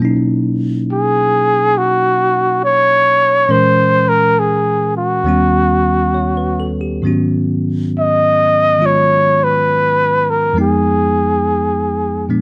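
A bell-like tine electric piano opens this melancholic, intimate slow jazz passage at 68 BPM with a gentle swing, laying down a clean, bright accompaniment over a harmony that moves from Bmaj9 toward Abm7, before a breathy, whispered trumpet enters at 0.9 seconds with a mellow, soft-attacked solo melody and tender vibrato, both parts sitting up front in a close, detailed recording touched with light reverb.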